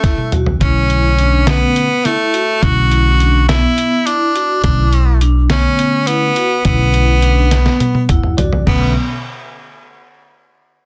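Progressive instrumental band music in 7/8, intricate and brooding and cut from a longer piece, where an edgy, forceful tenor saxophone leads up front with vibrato over ringing, metallic vibraphone arpeggios while a muffled, pitched-down sampler-style drum kit with a thumpy kick and fat snare opens on a fill, then at 0.6 s a woody pizzicato upright bass and a clean, bell-like tine electric piano in the background join, the piano adding its own fill at 7.8 s, with plate reverb on the saxophone, vibraphone and electric piano and a dense, heavily limited master.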